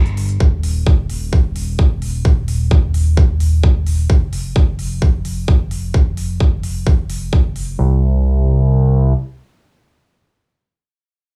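Anthemic and euphoric, this excerpt of festival progressive house drives along at 130 BPM in a straight 4/4, tuned slightly sharp to A4 = 444 Hz. A fat, thick analog bass anchors the track from the opening moment, its detuned sawtooth and square-wave tones saturated and nasal, with a fast attack and sustained notes ranging from Eb1 to C2, pumping under sidechain compression up front in the mix. A crisp, layered electronic hi-hat enters at 0.1 seconds, and a punchy, tape-warm electronic kick follows at 0.4 seconds and sits prominently forward, while the hi-hat rides quietly beneath it. The drums drop away before 8 seconds, leaving the bass to carry on until 9.1 seconds as the music moves into a new section at 7.8 seconds. A small digital room ambience lends the produced sound a touch of space.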